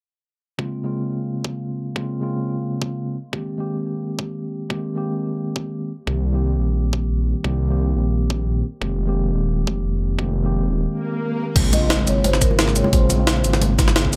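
A straight 4/4 pulse opens this melancholic, lush liquid drum and bass fragment, driven by a knocking, overdriven electronic kick that sits up front, re-recorded in a small room. A mellow tine electric piano, clean and heard as if through built-in speakers, carries the chords with a touch of delay, moving through Bbm9, Abmaj9, Cm7 and Fm11. At 6.1 seconds a dark detuned saw bass arrives, deep and rumbling, its unison voices beating against each other with sustained weight. An electronic swell from 11.0 seconds builds into a sub drop and impact, and at 11.6 seconds the drop lands with a compressed, pitched-up jungle sampler-style kit whose high-tuned snare, hi-hat, shaker and crash ring out from a large room. Over it, a soft-mallet vibraphone adds a brief, airy, metallic melody with fast motor vibrato and delay, while very quiet, bright acoustic congas and a digital ambience round out the sound.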